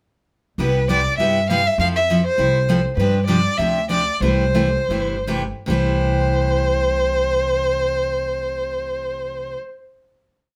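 A light reverb gives this short, complete piece of acoustic string swing in the jazz manouche style a touch of space, with a playful, swinging mood in 4/4 and C major. The tempo moves between 142 and 202 BPM, with the pace slowing from 3.0 to 5.7 seconds before the piece settles on a final chord held from 5.7 to 9.0 seconds. Up front, a single bowed violin carries a rich, smooth, even melody with vibrato, built from short motifs shaped into sentence-like phrases. A picked steel-string dreadnought guitar with fresh strings supplies bright, full-bodied four-to-the-bar rhythm, its chords short and accented on two and four, with the occasional finger squeak. Beneath them, a pizzicato upright bass on gut strings plays a woody, thumpy two-beat line of roots and fifths in a dark low register, moving through Cmaj7, Fmaj7, G7sus4 and C6.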